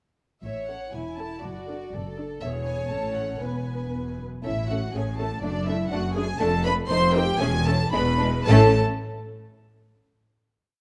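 Graceful and lively, this short, quick classical-period movement for string orchestra in A major moves in a rubato 2/4 at 109-124 BPM, with a floating, sul tasto symphonic violin melody over an intimate chamber violin counter-melody of repeated notes and sustained chords, a woody viola section entering at 0.7 s with pizzicato chords in the rhythm of the tune, a background cello section giving pizzicato and sustained bass that answers at phrase ends, and a distant, lush double bass section doubling the bass line, all set in a moderate recital hall reverb before closing on an A chord at 8.5 s.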